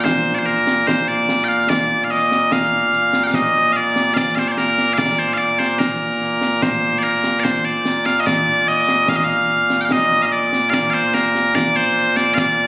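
Loud, piercing bagpipes carry a proud, stirring melody from the very start of this Scottish traditional pipe excerpt in Bb major (tuned to A4 = 441 Hz), moving at 73 BPM in a straight 2/4 and stated twice across its 12.7 seconds, while concert snare and bass drum, close and dry with bright cymbals, join at 0.1 seconds beneath the up-front pipes, all set in a moderate recital-hall reverb with a compressed, phone-in-the-room sound.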